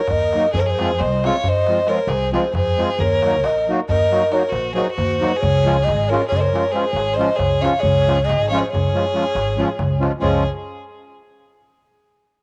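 A breathy, hollow low ney carries the melody in this exuberant, festive Balkan wedding-band excerpt in 11/8 at 273 BPM (eighths) in Db major, joined by a bright, airy bowed violin second line colored by cassette tape and analog delay, reedy, sweet accordion accompaniment with light tremolo tuning entering at 0.3 seconds, woody, growly pizzicato upright bass and a deep, saturated clay-shell darbuka, all in light studio reverb on a home cassette recording as the chords move from Ebm through Fm to Db.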